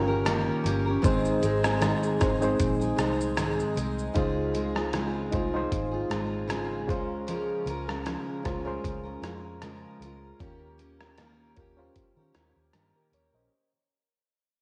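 This laid-back, hazy stretch of indie bedroom pop, cut from a longer piece, opens with a picked steel-string acoustic guitar, a reedy electric piano and a muted electric bass sounding together on an Eb7 chord, with a dusty sampler-style drum kit joining at 0.3 seconds. At 77 BPM in 4/4 with a gentle swing on the sixteenths, it settles into Ab major and moves through Dbmaj7 and Bbm7/Db before returning to Eb7, while the whole passage fades out from 1.0 seconds onward. The full-bodied jumbo acoustic sits up front with fresh strings and audible finger squeak, its subtle chorus and warbly pitch drift adding a seasick wobble. Alongside it, the worn, slightly out-of-tune electric piano plays through its built-in speakers with cassette tape coloring, and the dark, round, foam-muted bass gives a punchy low end. The compressed drums, also up front, offer a thumpy kick, hi-hat, rim click and shaker with 12-bit sampler grit and a large-room sheen, and a lush hall reverb wraps the home cassette recording in a soft haze.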